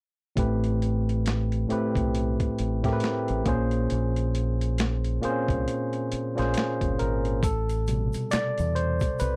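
A barky tine electric piano sits up front, clean and played through a combo amp, carrying the chords of this smooth, late-night R&B and neo-soul fragment with a sixteenth-note swing. Beneath it, a deep dub fingered electric bass gives a dark, round, punchy low end, thickened by tube saturation. The boom bap sampler-style drum kit is compressed, pitched down and gritty, with a thumpy kick, a high-tuned snare and hi-hat, overdriven and re-recorded in a small room, and it sits up front. The harmony moves from Am9 to Bbm9 at 3.5 seconds and settles back on Am9 at 7.4 seconds, where the electric piano takes a solo. At that point a tube shaker, finger snaps and a group handclap enter, distant and in the background as if from a large room. The whole has the dry, close feel of a 1970s-style studio with only light reverb, and it is cut from a longer piece.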